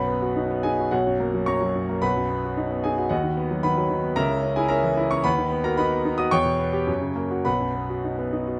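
Close, detailed microphones and light reverb place a clear concert grand piano up front, its deep bass and long sustain ringing with a natural tone. This heroic, sparkling virtuoso piano study in B major moves in 2/4 at 102-115 BPM with a rubato feel, its solo part spanning B1 to D#6. Cut from a longer piece, the 8.6-second passage circles through dominant and diminished colours before settling back on B.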